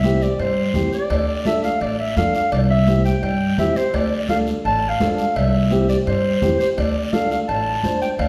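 A reverberant hall sound with a 1.3-second tail surrounds this short cumbia excerpt, and lossy compression artefacts show through. The passionate, danceable groove moves at 169 BPM in a straight 4/4 and rocks between C and D minor chords. Up front, a distant, roomy clarinet carries the melody in a mellow classical style, while a growly, woody upright bass played pizzicato sits just as close beneath it. A dark, boxy upright piano fills in the accompaniment. Ringing high-tuned congas played with soft hands keep the pulse in the background, a raspy guiro adds its scrape from a small room, and cowbell and timbales with a metal-shell ring join at 0.4 seconds from a more distant space in the background.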